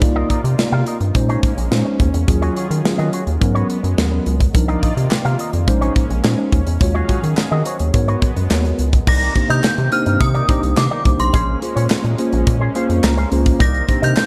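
A rubbery, hollow square-wave bass and a tight modern studio drum kit with gated reverb drive this late-night, funky stretch of early-eighties boogie funk at 106 BPM in C phrygian from the very first beat, sitting up front under a mellow tine electric piano that carries the accompaniment. Behind them, a brassy, detuned analog pad holds sustained minor eleventh chords with chorus and vibrato, while a dark, compressed electric guitar through an envelope filter and analog chorus plays a clean, fingered riff. Crisp group handclaps join in the background at 5.1 seconds, adding a human, small-room snap to the kick, snare, hi-hat and crash. At 9.1 seconds the harmony shifts to minor ninth chords and an inharmonic FM synth chime enters with a ringing, decaying melody high in the sixth octave, thickened by ensemble chorus. The electric piano adds a brief fill near the end, and the whole piece sits in light small-room ambience with lossy compression artefacts, cut from a longer piece.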